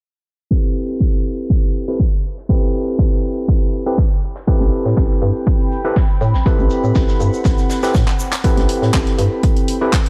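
An overdriven, gritty tine electric piano plays filtered, pumping stabs with dub echo over a punchy, up-front electronic kick and a distant arena kit's hats and fat snare in this late-night, smooth deep house excerpt at 121 BPM in A dorian on an Am9 chord, as a hollow, bouncy FM bass and background egg shaker arrive near 4.6 seconds, a warbling, nostalgic pad with chorus and phaser enters at 5.3 seconds, and tape-warm claps and hi-hat join at 8.1 seconds with a drum fill, all in a dark, small-room mix.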